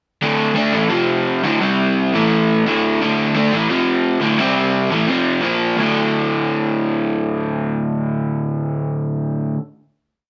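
A gritty, menacing rock piece where a lone crunchy, overdriven electric guitar, bright, double-tracked and up front in a wet studio reverb, picks a power-chord riff from 0.2 seconds before landing on a final chord at 5.8 seconds.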